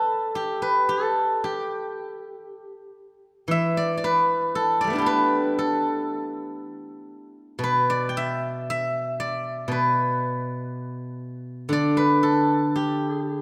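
A silvery, ringing steel-string zither played with fingerpicks sits up front as the lone voice in this serene, pastoral Chinese traditional solo, drifting in a free rubato around 55-60 BPM in 4/4 across its 13.4 seconds, its mellow acoustic tone spanning B2 to G5 and tuned to A4 = 442 Hz, all bathed in a moderate concert-hall reverb in this short passage cut from a longer piece.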